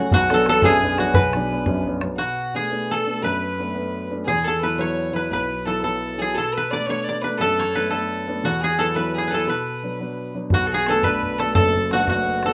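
A Celtic folk jig in 6/8 with a spirited, dark and lively mood, cut from a longer piece. A bright, woody koto, played with fingerpicks and sitting dry and up front, carries the melody throughout. A single bowed fiddle with light vibrato and an earthy, close tone adds a second line in the same register. A very quiet open-back banjo, twangy and plunky, also plays a second line, but only until 1.8 seconds. Underneath, a present grand piano with long sustain supplies the accompaniment over Bm, Bm7 and Esus2 chords, while a damped, tight bodhran plays at the start and returns at 10.5 seconds, all set in a moderate studio reverb.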